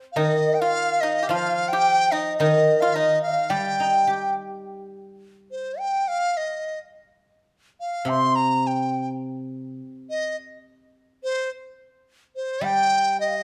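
Tender and wistful, this short cut from a longer Chinese chamber piece in 2/4 places a hollow, buzzing dizi up front on the melody throughout, its pure bamboo tone carrying vibrato and a soft attack. A very quiet, airy xiao and a dry, percussive pipa add a second line mostly in the opening 4.4 seconds, while a ringing, silvery guzheng accompanies up front and returns near 8.1 and 12.6 seconds. A moderate recital hall reverb gives the ensemble a gentle sense of space.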